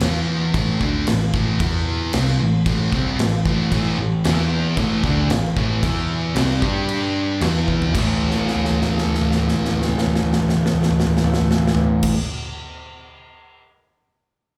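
A sludgy, overdriven electric guitar riff sits up front in this menacing, driving hard rock excerpt from a live club gig, joined at 3.7 s by a second, darker overdriven guitar with slapback echo in the background, while a round, punchy picked bass and a big acoustic rock kit with bright cymbals, a punchy kick and toms drive the groove, a drum fill at 7.7 s leading into the next section, all carried through the venue's PA with club reverb.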